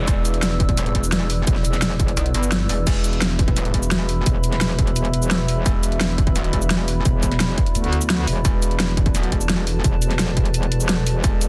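This tense, aggressive slice of dark technical drum and bass, cut from a longer piece, opens on an E5 chord held by two pads in the background. The dark analog pad is a deep, moody bed of detuned sawtooth and triangle tones with a sub octave, colored by chorus, phaser and a vintage 12-bit sampler grit. Above it, a warbly tape-like pad adds nostalgic, lo-fi square-wave shimmer with a long release, soaked in its own reverb. Both pads pump against the sidechain. At 172 BPM in a straight 4/4, a pair of metallic FM wobble basses sits up front, saturated through tubes and thickened with chorus. One of them drops out at 2.2 seconds and returns at 4.3 seconds. A distorted, layered electronic kick drives the groove and briefly falls away between 2.5 and 2.9 seconds, while a dubstep kit adds a huge snare, bright hi-hats, cabasa and crash cymbal, all tape-warm and forward. The mix is dry, dense and heavily limited in a modern style.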